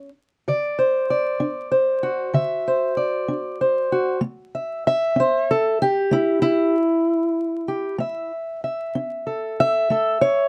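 A fingerpicked steel-string parlour guitar opens this short excerpt of acoustic country blues alone, its dark, boxy tone sitting up front with audible finger squeak. The rollicking, soulful playing rolls along in a straight 12/8, moving from D7 to A7 at 4.2 seconds. Close, detailed microphones and light reverb catch every string, while a layer of vinyl crackle lends an aged patina.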